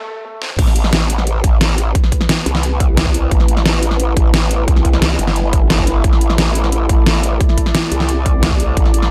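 A dry, high-passed excerpt of dark technical drum and bass at 176 BPM in A minor, aggressive and mechanical, where a soft felt-muted upright piano briefly arpeggiates before a drum fill at 0.4 seconds tips into the drop at 0.6 seconds, bringing a punchy overdriven electronic kick, an up-front dubstep kit with deep snare, metallic hats, crash and toms, a growling, wobbling saturated bass with formant-filtered bite, and from 1.9 seconds a moody, detuned sawtooth pad with chorus and its own reverb pumping beneath it all.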